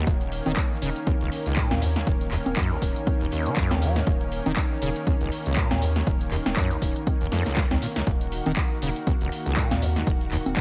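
A dry, gritty and hypnotic acid house excerpt at 120 BPM in Eb minor, with a 16th-note swing, where an overdriven electronic kick sits up front beside a punchy analog drum machine of congas, handclaps, hi-hat and snare with a short room on the snare, clap and hats, while a squelchy, resonant sawtooth acid bass riff with analog chorus and delay rides over a deep, saturated triangle sub bass and a lush, airy, detuned unison pad holding sustained chords, all three pumping to the sidechain, with a drum fill from 7.3 to 8.1 seconds.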